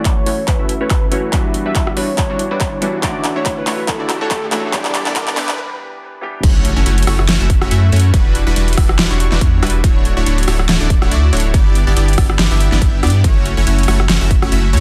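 Future bass at 141 BPM in a swung half-time feel, emotional and bittersweet, this excerpt opens with a build-up where a velvety, warbling synth lead with chorus and vibrato carries the melody over a clear background piano, airy detuned supersaw stabs under a filter sweep, a very quiet riser and sub drop, and a drum fill from a big-room kit with a huge snare and metallic hats over a punchy electronic kick, then after a brief break drops at 6.4 s into thick, saturated sub bass up front with sidechain pumping as the chords cycle through F#m7, Em9, Dmaj9 and G6 in a dense, heavily limited mix.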